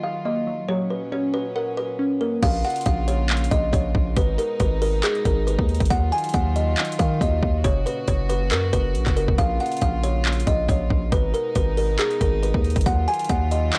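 Dark and hard-hitting, this half-time trap cut at 138 BPM in Bb phrygian opens with a woody, boxy kalimba melody over earthy bowed chamber strings and a glassy, chorused wavetable pluck that carries a filter sweep before dropping out at 2.4 seconds. From there, a distorted, aggressive 808-style bass and an overdriven trap kit with a hard-clipped kick, metallic hi-hats, handclaps and crash cymbal hit up front, roughened by 12-bit sampler grit. The chords cycle through Ebmadd9, Gb, Bbm and Abm in a dry, gritty recording with digital ambience.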